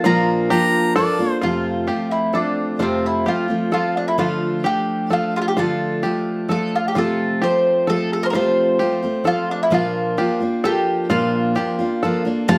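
In a steady, straight three-four feel, this peaceful acoustic folk clip puts a round, double-strung mandolin melody up front over a full-bodied picked steel-string guitar and twangy fingerpicked banjo arpeggios, while a bright harmonica with light vibrato adds a brief second line from 0.5 to 1.4 seconds, all within a moderate studio room as the chords move from Bb to F, Dm, F/C and back to Bb.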